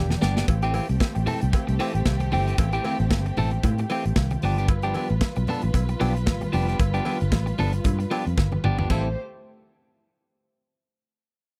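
A swung 16th-note disco groove at 114 BPM in 4/4 drives this sultry A minor excerpt, where a polished, punchy drum kit with crash, hi-hat, snare and toms opens with a fill alongside the round, dark fingered bass, compressed clean electric guitar, lush bowed string chords and very quiet low-tuned congas, with a metallic cowbell joining at 0.5 seconds as everything settles over Am7 and G7 in a dry, close 1970s-style room.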